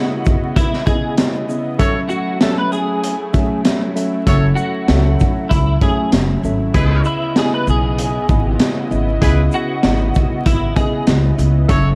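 Vinyl crackle and a small-room ambience frame this dark, reflective boom-bap hip-hop cut in C# minor, moving at 97 BPM with a swung 16th feel over C#m9 and F#m7 chords. A worn, slightly out-of-tune tine electric piano with cassette-tape colouring, a lush, detuned sawtooth pad in the background and a clean, compressed picked electric guitar melody with tape echo open the piece, joined at 0.3 s by a crunchy, saturated breakbeat kit with a punchy kick and high-tuned snare, then at 1.8 s by distant, roomy horn stabs with light vibrato. A woody, thumpy pizzicato upright bass arrives up front at 4.3 s.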